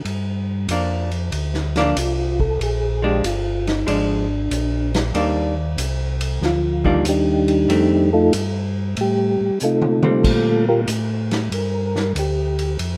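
Soul jazz organ trio swinging at 94 BPM in a bluesy groove, cut from a longer piece with light reverb and a rough home-demo feel. A mellow tonewheel organ holds down the bass from the start, round and dark with audible key click, sitting up front through a slow rotary speaker. A vintage drum kit enters at 0.1 seconds with a punchy kick, medium-tuned snare, dark cymbals and a rolled-off top in a small, pumping room, adding a short fill from 9.6 to 10.2 seconds. A hollow-body jazz guitar, dark and picked, comps underneath from 0.7 to 10.8 seconds. The lead comes from a second, percussive tonewheel organ entering at 1.8 seconds, soft and flute-like with chorus vibrato, carrying the melody over changes that move from Gm7 through Bb7, Ebmaj7 and F7 to a closing Bb69.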